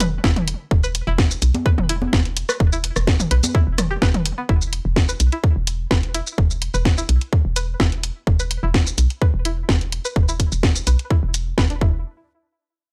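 A straight 4/4 minimal techno groove at 127 BPM drives this hypnotic, quirky excerpt, where a tight, up-front electronic kick arrives at 0.2 seconds beneath a garage kit of cracking snare, bright hats and shaker. Overdriven congas, rim clicks and toms with tape echo drop out at 4.2 seconds, while a hollow, bouncy FM bass knocks with sidechain pumping. A twangy, string-like resonator pluck riff with chorus and tape echo carries a filter sweep throughout the dry, gritty hardware recording.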